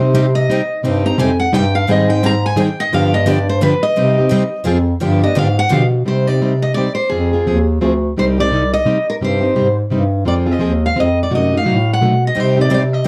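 A picked steel-string acoustic guitar opens with a virtuosic, finger-squeaking solo over a plugged-in guitar's fresh-stringed accompaniment and a mellow bass clarinet's scooped, lightly vibrato bass line in this bittersweet, dark-toned jazz manouche waltz in C minor at 172 BPM, with a bright second accompanying guitar sitting lower in the mix until 5.8 seconds and returning at 12.3 seconds as the chords move from Fm through F#dim7 back to Cm.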